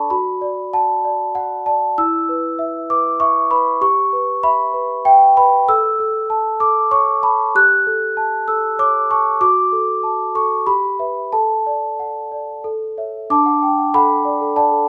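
In a gently swaying triple metre with a free, rubato pulse, this dreamy, tender classical lullaby is carried entirely by a solo large celesta, bell-like and sweet, sitting up front with a full, ringing tone softened by medium felt hammers. The instrument ranges from its middle register up into sparkling heights, its harmonies drifting through simple, lulling changes under a light reverb. Cut from a longer piece, the music turns to a new passage at 13.3 seconds, settling on a home chord before it ends at 14.9 seconds.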